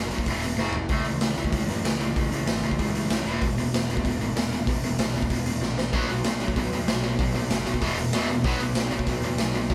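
A raw live-room take with light reverb, this rowdy, rebellious punk rock cut from a longer piece charges along at 191 BPM in a straight 4/4. A tight, bright, distorted guitar riff sits up front over a growly, fuzz-drenched picked bass and a gritty, saturated garage drum kit with a punchy kick, medium-tuned snare and rolled-off top, pumping in a stone room. The drums throw in quick fills, and at 5.9 seconds an overdriven second guitar joins the riff from the background as the chords move through E5, F#5, A/C# and B5.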